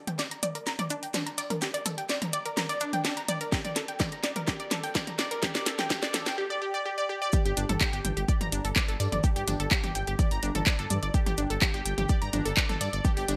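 A round, chorused analog pluck spins hypnotic G minor arpeggios through a filter sweep in this dark melodic techno excerpt at 126 BPM, over a house drum kit with cracking snare, metallic hats and gated reverb, a very quiet, dry cocktail kit adding shaker, a punchy electronic kick arriving at 3.5 seconds, and a rumbling, sidechain-pumped detuned saw bass entering at 7.5 seconds just after the drop, set in a bright 1980s-style digital production with plate reverb.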